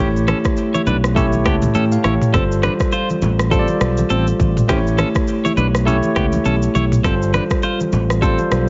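Joyful and breezy, this short afrobeats excerpt moves at 102 BPM in 4/4 with a lilting sixteenth-note swing, centred on G mixolydian as the harmony alternates between A7 and G9sus4. A bell-like tine electric piano sits up front with a bright, clean accompaniment, stepping out for a brief fill between 1.2 and 2.3 seconds. A fingered electric bass holds the low end with a warm, direct presence, while a clean electric guitar plays a picked, twangy riff coloured by delay. The electronic afro-pop drum kit arrives at 0.2 seconds with a deep kick, rim clicks, shaker and toms, and very quiet congas add a thin-skinned, low-tuned, vintage texture beneath. The whole mix carries light reverb and a heavily compressed, radio-like sound with the top end rolled off, giving the groove a broadcast feel.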